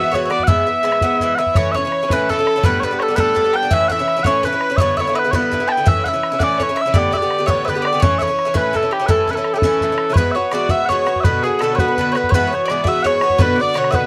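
Celtic folk jig in 6/8 at 112 BPM, bright and rollicking, cut from a longer piece, set in A mixolydian before moving to E mixolydian at 10.2 seconds. Mellow, sweet small bagpipes carry the melody up front with vibrato, while a bright, metallic Irish bouzouki picks the accompaniment and an open, boomy bodhran drives the percussion. In the background, a woody picked mandolin and a biting, nasal fiddle play a second line, all captured in a dry, close 1970s-style studio sound with light reverb.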